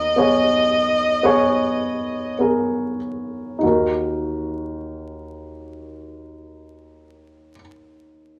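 In a slow, straight 4/4 at 47 to 57 BPM that slows down over the first 3.6 seconds, this melancholic, emotional pop excerpt in Eb minor opens with a single bowed violin playing Eb5 with a clear, smooth vibrato until 2.4 seconds. A dark, mellow baby grand piano carries the accompaniment from Eb2 to Db5 throughout, its intimate short-sustained tone and audible action noise sitting up front as the harmony moves from Abmadd9/Eb to Ebm at 3.6 seconds. A wet studio reverb and a layer of vinyl crackle surround this brief passage, which is cut from a longer piece.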